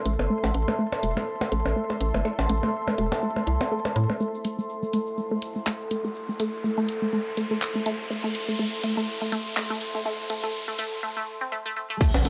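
Sparse and hypnotic, this minimal techno excerpt in A minor at 123 BPM sets a squelchy, resonant blip pluck riff with phaser and analog delay over a deep, moody sidechain-pumped pad, a hollow, bouncy FM bass, a garage drum kit of crash, handclaps and warm hats, and overdriven percussion blips; at 4.2 seconds the bass and blips drop away as a grainy tube shaker enters, and a filter-swept build-up with downlifter and riser effects leads to a break at 11.0 seconds and an impact with a tight electronic kick at 12.0 seconds, all on a gritty cassette-tape recording with light reverb.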